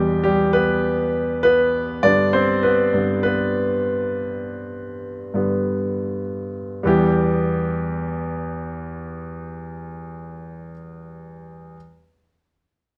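A clear concert grand piano opens this short pop excerpt alone, carrying the whole piece from 0.0 to 11.8 seconds in a driving, earnest mood at 100 BPM in 4/4 with a straight feel. The piano sits up front with a polished, present tone and a deep bass, ranging from E2 to D5. Set in E minor, the harmony moves from Em to G at 2.0 seconds before returning to Em as a new section begins at 6.8 seconds. A wet small room reverb with a short decay gives the sound the close, lively feel of musicians playing together in one room. Cut from a longer piece, the passage feels like a brief, focused statement from the keyboard.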